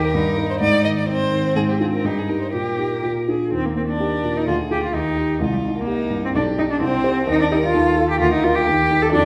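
A wet scoring-stage reverb surrounds this short cut from a quick, graceful and cheerful classical-period movement for piano trio in Eb major, played at 128 BPM in 2/4 with a rubato feel and tuned to A4 = 444 Hz. A dark, mellow grand piano sits up front with the accompaniment, while a focused, smooth-topped cello carries a second line just as prominently, and a softer violin sings the melody with vibrato, portamento and a gentle, expressive bowed attack. All three play throughout, and the harmony moves from tonic, subdominant and dominant chords into a more shaded passage from 3.5 s, touching a diminished chord and C minor before settling back on Eb.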